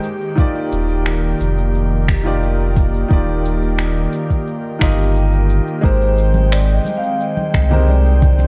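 An overdriven soft electronic kick joins electronic cabasa and finger snaps at 0.4 seconds in a straight 4/4, setting a sunny, relaxed sunset chillout groove where a round, deep sub bass sits up front, a clear grand piano with audible action noise and digital delay plays accompaniment, and an airy, breathy chorused pad holds sustained chords moving from Ebmaj7 to Abmaj7, before a mellow, ringing vibraphone with soft mallets takes the melody at 5.8 seconds and thick-skinned congas arrive in the background, the whole cut from a longer piece and set in a dark production with light small-room reverb.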